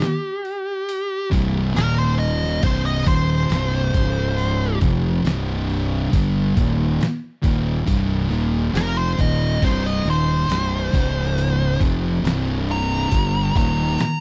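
A fuzz lead guitar opens the piece at once, playing a dark, distorted solo in the G4 to Bb5 range through wah and tape echo, backed by a compressed, muffled sampler-style drum kit with a thumpy kick, fat snare, hi-hat and crash. At 1.3 seconds two thick fuzz guitars join in the background with a low riff, alongside a growly, punchy fingered bass that sits up front with a bright overdriven edge. The result is a hypnotic, brooding stoner and doom metal passage at 69 BPM in C minor, cut from a longer piece and captured in a dry, close 1970s-style studio sound that circles between C minor and D-flat power chords.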